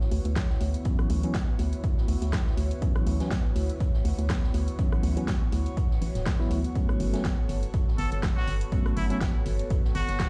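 A soulful deep house groove, cut from a longer piece, sounds as if it's played on a big sound system in a bare room, with a stony small-room reverb around it. At 122 BPM in D major, with a light 16th-note swing, it moves from a lush Dmaj13 to Gmaj9#11 at 6.8 seconds. A dry, punchy electronic kick sits up front beside a dark, hollow, organ-like FM bass whose fast-attack notes pump against the kick. A layered deep house kit adds a fat snare, hi-hat and rim click with gritty 12-bit sampler texture, while an acoustic jazz kit with a high-tuned snare and filtered hats stays in the background. A worn, slightly out-of-tune tine electric piano drops mellow stabs through tape echo, sitting beneath a breathy, detuned pad that shimmers with chorus and phaser. At 8.0 seconds, a nasal trumpet with a straight mute enters for a short solo, with vibrato and scooped notes trailing into tape echo.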